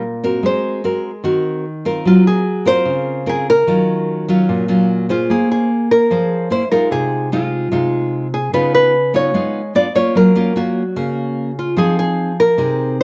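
Wistful and intimate, this short bossa nova passage is cut from a longer piece and moves with a straight, even feel in 4/4. Two fingerpicked nylon-string guitars share the spotlight. One carries the melody in a small, warm voice, and the other plays a bright, full-bodied classical accompaniment with the sound of fresh strings. Both sit up front in a moderate studio reverb that gives the pair a close, roomy glow. The harmony drifts through lush extended chords such as Ab9, Gbmaj9#11 and Ebm9 before a new section at 5.3 seconds turns toward Bbm9, a tense C7b9 and a chain of Db9, Db7b9 and Gbmaj7. The excerpt closes on Fm7 from 11.8 seconds.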